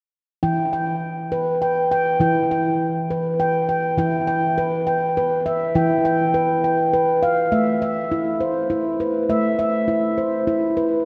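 Meditative world music at a gentle, hypnotic 68 BPM in 6/8, this excerpt from a longer piece features a dark, ringing stainless-steel handpan played with the fingertips, whose smooth arpeggios span E3 to G5 up front in the mix from 0.4 to 11.1 seconds, colored by analog delay and soaked in a lush hall reverb with a dreamy cassette-tape character, moving from an E5 chord to A minor at 7.5 seconds.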